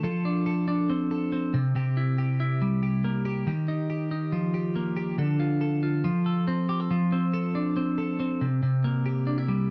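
A clean, twangy twelve-string electric guitar plays alone and up front through this short indie pop excerpt, its picked, compressed tone moving at 140 BPM in F major. The mood is bright and nostalgic as the chords pass through F6, C7, Ebadd9 and Dm, with a new section at 6.9 seconds returning to F6 and C7. Light reverb and a dark, warm production soften the top end.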